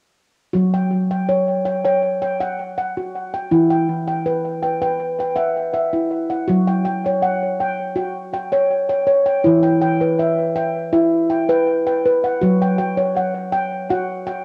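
A lone handpan enters at 0.5 s with ringing arpeggios across E3 to G5, its nitrided steel struck with sharp finger strokes and placed up front, in a gentle, hypnotic world-meditative piece at 81 BPM in straight 4/4, tuned to A4 = 442 Hz. The harmony alternates between F#5 and Em, with a second passage beginning at 6.5 s and running to 14.4 s. Cassette tape colour, analog delay and a wet spring reverb give this home-recorded cutting from a longer piece a boxy, small-room intimacy.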